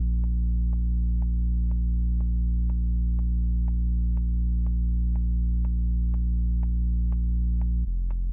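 A steady, straight 4/4 pulse at 122 BPM anchors this short cut from a longer dub techno piece, and its mood is hazy and hypnotic. A deep, warm, round sub bass carries the low end from the first moment to the last, sitting between F1 and Bb1 with a fast attack and sustained, mellow sine tones placed up front. Far beneath it in the balance, a layered, produced electronic hi-hat enters at 0.2 seconds and runs until 8.2 seconds, adding a faint top layer. A low-pass filter shapes the sound, and a filter sweep spans the whole passage, lending it a murky, submerged character. The space is dry, keeping the focus on the bass's full, rounded body.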